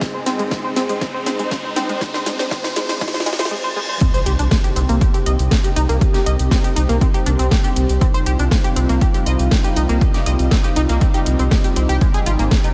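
A straight 4/4 pulse at 120 BPM drives this driving, melancholic melodic techno cut in C minor, where an overdriven, punchy kick and a roomy kit of cracking snare and hi-hats anchor a nasal, detuned synth arpeggio with diffuse delay and a moody sawtooth pad, both carrying chorus and sidechain pumping, while background bowed strings with vibrato stop at 3.5 s as a filter-swept build-up with a drum fill, riser and reverse cymbal gives way at 4.0 s to a drop with an electronic impact, a round, deep bass from 4.3 s and, from 6.4 s, a very quiet warbling drone, in a dreamy, reverb-soaked mix.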